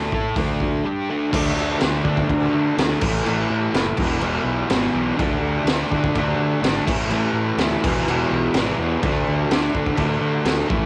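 Garage rock from a duo or trio, raw and rowdy, driving along at 125 BPM in a straight 4/4 in this short cut from a longer piece. The fuzz guitar sits up front with a bright, picked, double-tracked riff running from E2 to A4, its distortion smeared by cassette tape grit. Under it the fingered electric bass growls with overdriven fuzz, reaching down to E1 and up to D3. The acoustic drum kit, heard from 0.1 s, pairs a high-tuned snare and boomy kick with hi-hat and crash cymbal, its saturated, rolled-off top giving the small-room sound a gritty, mid-forward punch. The harmony cycles through D5, A5 and E chords, and after a brief opening section the main section takes over at 1.3 s, all captured dry as a home cassette recording.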